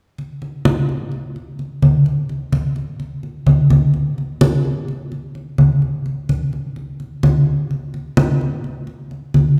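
A danceable, warm Latin groove at 128 BPM in a straight 4/4, this short cut from a longer piece features bright, low-tuned acoustic congas with a thin skin, sounding up front and close from 0.2 to 9.6 seconds, while a wet recital-hall reverb adds a distant sense of space, and the passage shifts into a new section at 7.7 seconds.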